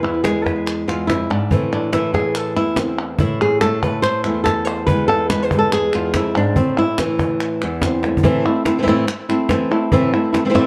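Passionate and dramatic, this short flamenco passage, cut from a longer piece, moves in a straight four-beat feel over a harmony that shifts between E and A minor. A bright, fingerpicked nylon-string flamenco guitar sits up front and carries the melody across a range from E2 to C5, its finger squeaks audible and its tone colored by plate reverb and tape echo. Crisp palmas hand claps run throughout in a live-room sound, while a snappy cajon with snares enters at 0.2 seconds and keeps time beneath. The guitar takes a solo through the opening stretch until 8.2 seconds, just after a drum fill at 8.0 seconds ushers in a new section. A moderate stone-room reverb and a dark production give the whole an intimate, shadowed atmosphere.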